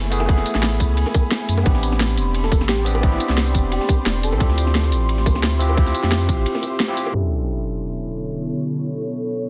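A gritty, barky tine electric piano, overdriven through a combo amp and colored by a low-pass filter and dub echo, carries the accompaniment in this melancholic, lush liquid drum and bass excerpt, cut from a longer piece. Alongside it, an ethereal pad built from detuned sawtooth and triangle layers with a noise layer holds slow-blooming chords, soaked in ensemble chorus, phaser and its own reverb. The drums sit up front: a tight, layered, overdriven electronic kick and a kit with a cracking snare, bright hats, ride and tambourine, joined by very quiet, high-tuned acoustic bongos struck with hard hands, all over a round, deep sine sub bass. Briefly in the background, a soft, dreamy lead with chorus, vibrato and digital delay sings a short line. After a break and a band accent, the beat has fallen away by 7.1 seconds as an electronic sub drop hits, while filter sweeps move across the electric piano and the pad to the close at 9.5 seconds. 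The dense, heavily limited modern master carries a light reverb.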